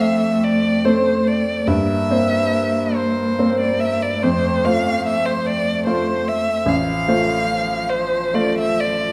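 A close, up-front violin carries the lyrical melody with warm vibrato, soft attacks and expressive portamento in this brief passage from a slow, romantic classical piano trio movement in 6/8 with free rubato. A dark, woody cello sings a second line from further back, bowed with its own vibrato, while a clear, present grand piano supplies the accompaniment across its range. All three play throughout the 9.1 seconds, set in a resonant recital hall.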